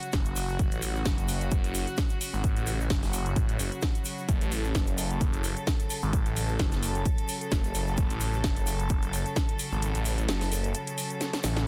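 Dense, heavily limited and bathed in digital ambience, this gritty, aggressive bass house excerpt at 130 BPM in F# minor is driven by a swirling, thick, saturated phased detuned saw bass with sidechain pumping up front, a punchy, tape-warm electronic kick until 9.5 s, a house drum kit with cracking snare and metallic hats that closes on a fill at 11.2 s, a grainy, bright egg shaker in the background, and a distant, earthy chamber string section holding sustained chords with light vibrato and its own sidechain pumping.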